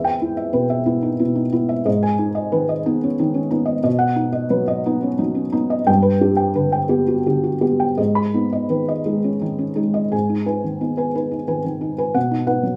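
Neoclassical minimalist piano in G# minor, this reflective, wistful fragment of a longer piece drifts in a slow, rubato 6/8 at roughly 55-61 BPM, counted in dotted quarters. A lone felt-muted upright piano carries everything across 12.8 seconds, spanning E2 to B5 with a dark, intimate tone whose notes fade quickly under the thick felt. The harmony moves from Em to G#m, then through B and G before returning to G#m, and the closing bars shift into new material around 10.1 seconds before settling on B at 12.2 seconds. The piano sits up front in a rough home demo mix, with a touch of light reverb and the ambience of a small room. Tuned slightly high, to A4 = 441 Hz, it has a natural, close-up character that suits its hushed, introspective mood.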